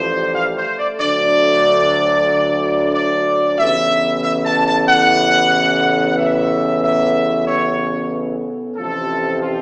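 Solemn and majestic, this classical brass passage at 93 BPM in A major is cut from a longer piece, with a trumpet section carrying the melody up front, its tone smooth on top with light vibrato. Behind it, a dark, distant French horn section and a roomy trombone section hold sustained chords while a tuba with gentle vibrato anchors the bass, all four parts playing throughout the 9.6 seconds. Chords move from Fadd9/A to D and on to Aadd9 before returning to Fadd9/A, set in a wet recital-hall reverb that gives the recording a church-like space, though heard through a small-speaker sound.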